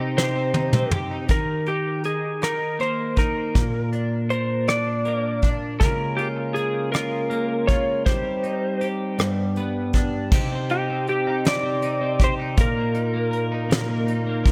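A six-eight pop ballad in C minor at a slow 53 BPM, this dramatic, aching excerpt opens with a bright, twangy, double-tracked twelve-string electric guitar picking the chords from Cm through Eb5, Bb and Db6, joined by a brushed drum fill from 0.2 to 1.3 seconds before a soft kit with a fat snare and tight kick settles in up front. Over them a slightly broken-up electric slide guitar, played with fingerpicks and trailed by digital delay, carries the melody between G4 and D5. A clear tonewheel organ through a stopped rotary speaker holds sustained chords at the start and returns at 5.8 seconds, all set in a light, small-room ambience.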